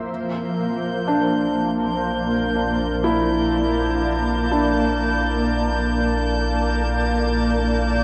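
This ambient excerpt feels serene and weightless, resting on a single Bbmaj9 chord in a straight 4/4. A cloudy, granular pad sits up front from the start, holding blurred, sustained chords with slow attacks and long releases in its own reverb. A glassy texture of drifting overtones arrives at 0.5 seconds, high and calm with chorus. A felt-muted upright piano enters at 1.1 seconds with soft, intimate arpeggios, its action noise audible and its notes trailed by tape echo. At 1.6 seconds a deep, rumbling drone joins underneath, dark and ominous, its detuned, wave-folded tone adding heft beneath the haze. The recording is bathed in a huge, wet reverb and carries the worn, warbling pitch drift of old cassette tape.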